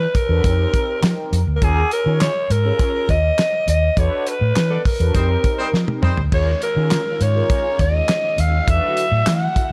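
A raspy, growling alto saxophone carries the melody from the start over a round, foam-muted electric bass, setting a late-night, funky early-eighties boogie funk groove at 102 BPM in a straight 4/4. A dry, damped drum kit sits up front with a fat snare, tight kick, dark cymbals, hi-hat, handclaps, crash and toms, while a detuned sawtooth synth brass with chorus and phaser fills in the accompaniment underneath. The harmony moves through suspended ninth chords, F9sus4, Eb9sus4 and E9sus4. The band hits an accent at 4.0 seconds, a mellow, distant horn section with tape echo adds a brief second line from 4.7 seconds, and the drums play a short fill. From 6.3 seconds, a shimmering string machine of violins with ensemble chorus holds sustained chords in the background, all within a small room ambience in this excerpt of a longer piece.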